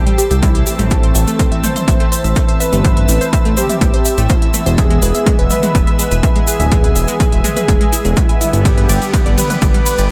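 A punchy electronic kick sits up front in this melancholic yet driving melodic techno excerpt at 124 BPM in A minor, its layered, tape-warm tone re-recorded in a small room, and it enters at 0.4 s. Beneath it a thick, detuned sawtooth bass roughened by tube saturation moves through a filter sweep, while a techno drum kit adds smooth hi-hats, ride cymbal and toms, joined by a grainy, bright egg shaker heard close and dry in the background. A fat analog lead carries the melody with a mellow, sustained tone, sub octave, vibrato, ensemble chorus and delay. An evolving wavetable pad holds morphing, warbling chords with chorus and built-in reverb, and from 0.7 s a bold, brassy analog pad adds wave-folded stabs with a filter swell and diffuse ambient delay. A lush unison pluck plays arpeggios in the background with a noise layer and moving notch, and the bass, lead, pads and pluck all pump with the sidechain over a progression of C6, Am, E and G under light reverb.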